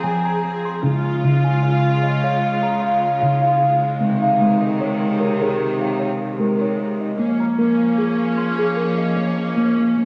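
At 76 BPM in 4/4 with a light swing on the sixteenths, this gentle, hypnotic world meditation fragment sets a steel tongue drum's round, pure, ringing arpeggios, struck with firm rubber mallets and trailed by tape echo, over sustained chords from a bright symphonic string section whose bowed ensemble tone is biting and intense, with light vibrato. In Bb minor, the harmony moves from Fm through Db and Ab before a shift to Bbm at 7.2 s opens a second section. Wet spring reverb and small-room ambience give it the intimate, slightly worn character of a home cassette recording.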